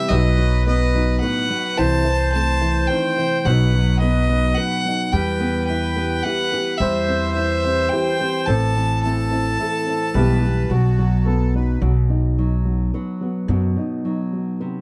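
Haunting and intimate, this acoustic folk fragment in 3/4 is led by a clear, earthy bowed fiddle with light vibrato that sits distant in the mix, shadowed by a reedy accordion second line with slow beating. A thumb-plucked classical nylon-string guitar and a dark, mellow, slightly detuned upright piano playing arpeggios fill out the accompaniment, while a woody, thumpy pizzicato upright bass on gut strings sits up front. Under light reverb, the fiddle drops out at 11.2 seconds and the accordion at 11.8 seconds as a short second section begins, leaving guitar, piano and bass, with the bass stopping at 13.8 seconds.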